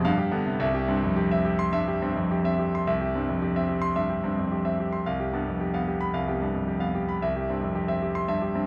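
Sparkling and heroic, this short cut from a classical virtuoso piano study moves at 109 BPM in C major with a rubato feel and uneven beats, its harmony turning between G7 and C. A solo concert grand sounds alone throughout, from 0.0 to 8.7 seconds, spanning C2 to C6 with a clear, polished, up-front tone, deep bass and short sustain. The piano sits in a wet recital hall reverb of 1.5 seconds, within a dark production, and the passage shifts into a new section at 2.9 seconds.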